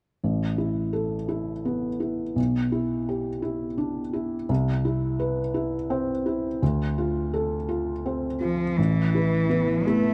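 Fragile and reflective, this short cut from a longer neoclassical piece for piano and strings drifts in a rubato 6/8 at around 56 beats per minute, tuned slightly low to A4 = 438 Hz. A felt-muted upright piano carries the accompaniment from the start, its soft, mellow tone sitting intimate and up front as the harmony moves from Asus2 through Em7/B, Cmaj7 and Dm7 before returning to Asus2. At 8.4 seconds a clear, focused cello enters as a second line, a single bowed player with vibrato heard close and forward in the mix. Just before the close, an ethereal, airy pad slips in at 9.8 seconds with dark, detuned sustained chords, kept very quiet beneath the other two parts and colored by chorus and phaser. The whole recording has the dry, close character of a 1970s-style studio session, touched only by light reverb.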